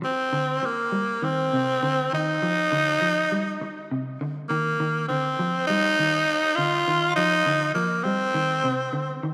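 A raspy, gritty tenor saxophone leads this short afrobeat excerpt, sitting close-miked and up front with an edgy, punchy vibrato as it plays a pop-style solo melody over a defiant, intense mood. Beneath it, a dark electric guitar at the edge of break-up plays fingered arpeggios on a single C minor add9 chord, both parts running through the full 9 seconds at a straight 101 BPM in 4/4. A wet plate reverb with a long tail surrounds the sound.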